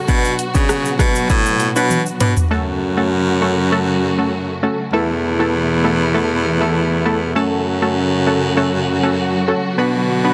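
Tough and bouncy, this dancehall excerpt rides a straight 99 BPM groove in F# minor, with a bright, close-miked baritone saxophone carrying the bass line up front in a vibrato-laden pop style with scooped notes, while punchy sawtooth chord stabs with a filter pluck and chorus sit beside a smooth, bowed string section playing sustained chords with portamento, both pumping under sidechain compression. An electronic afro-pop drum kit with a deep kick and warm hats, plus very quiet ringing egg shaker and timbales played with hard hands, drives the opening until a drum fill at 1.9 s, after which both drop out at 2.5 s, leaving sax, stabs and strings to move through F#m, Esus4 and back toward Bm. A lush hall reverb surrounds the dense, heavily limited modern master.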